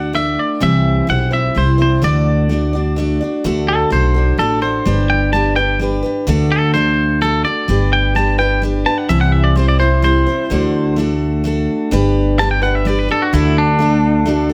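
A twangy, clean electric guitar carries the melody from the first moment over a bright, full-bodied picked acoustic guitar and a woody, thumpy pizzicato upright bass, setting a sunny, nostalgic honky-tonk waltz at 127 BPM in D mixolydian. At 3.4 seconds the compressed electric guitar moves into a solo that runs to the end at 14.5 seconds, riding changes that circle among D, G and C. Close, detailed miking keeps the three instruments up front, while a moderate large-studio reverb lends the classic country sound some space.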